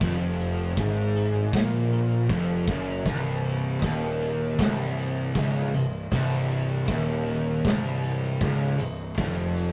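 Stoner and doom metal, heavy and sludgy, cut from a longer piece, with three electric guitars playing a low picked riff throughout: a fuzz guitar up front, a thick fuzz guitar in the background and a double-tracked, overdriven semi-hollow guitar tucked behind them. A bright, growly fingered bass with fuzz and overdrive sits underneath, while a brushed acoustic kit, distant and roomy yet placed up front, sounds its tight kick, medium-tuned snare and dark ride and crash. The rough rehearsal-room sound carries tube saturation and a short booth ambience as the harmony moves from Fmadd11 to Cm before the chords fall away at 9.2 seconds.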